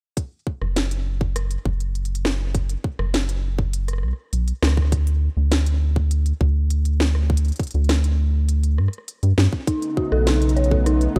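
Melancholic and cerebral, this IDM excerpt at 101 BPM sets a tight, tape-tinged electronic kick and an organic electronic kit with a woody snare, smooth hats and rim clicks under a rubbery, hollow square bass that bounces with a filter pluck and moving notch, until at 9.7 seconds a silky string machine with ensemble chorus and an eerie, inharmonic FM bell arpeggio, gritty with vintage 12-bit sampler texture, chorus and delay, bloom over a B9 chord in a rough home-demo mix with light digital reverb.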